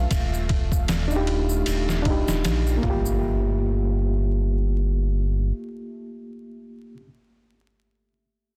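Trip hop at 77 BPM in G minor, cinematic and brooding, with a swung sixteenth feel and vinyl crackle over a dense, heavily limited master. A gritty, pitched-down sampler-style kit with a thumpy kick and overdriven snare sits up front beside a round, deep analog bass and a reedy, overdriven electric piano through a combo amp, which carries harmonic tremolo and tape echo. A very quiet vintage cello string machine, a tense, bright bowed-like drone and a dry egg shaker fill the background as the harmony moves from Ebmaj7 to Gm7 at 2.8 seconds, where an electronic impact enters; the drums drop out at 3.0 seconds and the piano carries on until 7.1 seconds.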